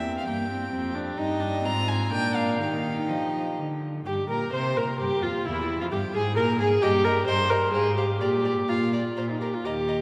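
A wet church reverb with a long 3.2-second decay surrounds this short cut from a longer piece, a quick classical-period movement for string quartet in Eb major and 3/4 at 129 BPM, played with a rubato, spirited and graceful feel. The first violin carries the melody with a rich, reedy gut-string tone and light vibrato, while the second violin adds a warm second line in period style. The viola supplies accompaniment with a smooth top and sits up front, and the cello grounds the harmony with a bowed bass line, also forward in the mix. All four single players are heard together from the start through the end at 10.0 seconds. A new section begins at 4.1 seconds on a suspended F chord, and the harmony then moves through E minor, a suspended Ab, Eb over G and F minor before settling on a bare Bb.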